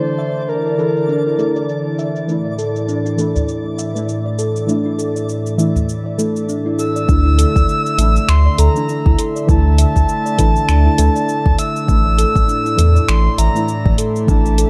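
Organic downtempo at 100 BPM with a gentle 16th-note swing and a meditative mood, built from a breathy, flute-like synth lead singing over a vintage, detuned analog pad with lush chorus, soft chord stabs set deep in the background, a ringing steel tongue drum struck with rubber mallets playing arpeggios, a twinkling granular shimmer, and a small-room-recorded, overdriven deep house kit of cabasa, finger snaps and muffled hi-hat, while a dry, close udu appears at 3.4 s before a round, up-front sub bass and deep overdriven kick enter together at 7.1 s, with sidechain pumping on the pad, stabs and bass in a dark, warm mix with light reverb.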